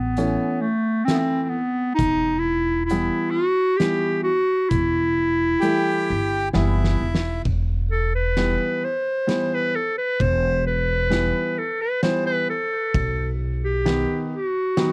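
A bright, smooth-topped clarinet carries the melody from the outset over a thumpy pizzicato upright bass, with a woody upright piano and an oversized, low-tuned drum kit joining almost at once in this festive yet bittersweet klezmer excerpt in E harmonic minor at 66 BPM in 3/4. The muffled, gritty drums, with a boomy kick and fat snare, play a fill just before the clarinet takes a solo at 7.5 seconds, while a reedy, close-miked accordion adds a brief second line from 5.6 seconds. The dry, close 1970s-style studio sound carries light reverb, and the bass stops at 14.0 seconds.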